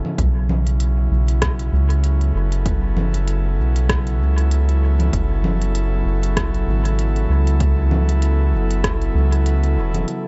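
The mix is dry in room sound but thick with echo, and its top end is dulled so the whole thing sits in a hazy, muffled frame. This is a spacious ambient dub excerpt at 97 BPM in 4/4, with a gentle 56% swing on the sixteenths. A round analog bass sits up front, deep, dark and faintly nasal, holding the low register as the harmony moves from B5 to F#m7 at 5.1 seconds. Above it, an airy, breathy pad with a chorused, detuned shimmer holds slow-blooming chords in the middle range. The organic electronic kit adds congas, crisp hi-hat and rim clicks that trail off in dub echo, and it has a boxy quality from being re-recorded in a small room. Further back, a layered, punchy electronic kick with overdrive grit drops out at 9.0 seconds, shortly before the bass stops at 10.0 seconds.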